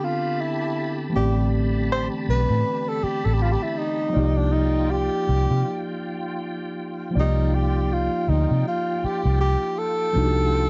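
A light reverb and a softened, rolled-off top end give this short R&B excerpt a soulful, late-night haze. A breathy tenor saxophone carries the melody up front, close-miked and intimate, with subtone, vibrato, scooped notes and a soft, whispered attack in a jazz-style solo voice. Beneath it, a mellow tine electric piano plays clean accompaniment through its built-in speakers, while a reedy tonewheel organ holds sustained chords higher up, its key click colored by chorus vibrato and a slow rotary speaker. At 1.2 seconds a foam-muted, fingered electric bass enters, round, punchy and amped, sitting prominently in the mix. The 16ths carry a gentle swing, and the harmony moves from Am11 to Cm11 at 4.1 seconds.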